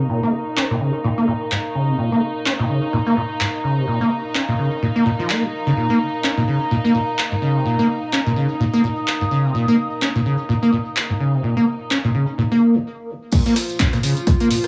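A swung acid house groove, trippy and hypnotic, rides on a punchy, up-front analog drum machine of handclaps, hi-hat, rim click, tambourine and crash from 0.6 seconds, beneath a squelchy, resonant sawtooth acid bass riff with overdrive, subtle chorus and digital delay. Dark, reedy bowed strings hold distant sustained chords through a low-pass filter and sidechain pumping, while a warbling, lo-fi, detuned pad drifts high above with chorus and reverb. After a brief stop at 12.9 seconds, the drop at 13.3 seconds brings in a punchy electronic kick and a very quiet, dry cocktail kit with high-tuned snare, hi-hat and tambourine.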